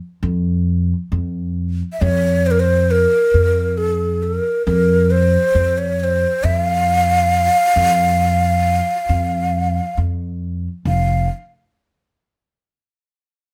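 A woody, growly pizzicato upright bass opens this festive Arabic maqam ensemble excerpt at 0.2 s, setting a straight 10/8 pulse at 136 BPM, before a breathy, hollow end-blown ney enters up front at 1.9 s with a crisp attack, vibrato and a short slapback echo, the pair sitting in light reverb until both stop at 11.3 s.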